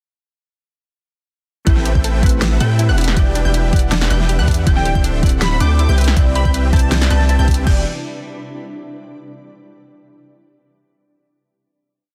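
Emotional, dreamy future bass in E minor at 160 BPM with a half-time feel, where glassy digital keys open at 1.6 seconds before a dense drop lands at 1.7 seconds with a deep, up-front sine 808 bass, a knocking overdriven kick, a pop kit of fat snare, warm hats, hat rolls and crash, huge detuned supersaw chords throbbing in a dotted rhythm through tape echo and cassette grit, and two lush unison pluck arpeggios (one bright and warbling in a drifting 6-step loop, the other doubling the chords an octave higher). A shimmering, ethereal granular pad joins at 3.4 seconds, and a punchy, catchy plucky unison lead with vibrato sings short answering phrases from 4.8 seconds, while the harmony moves through Am9, Em7, D9sus4 and Cmaj7 before the piece settles on a final Em7.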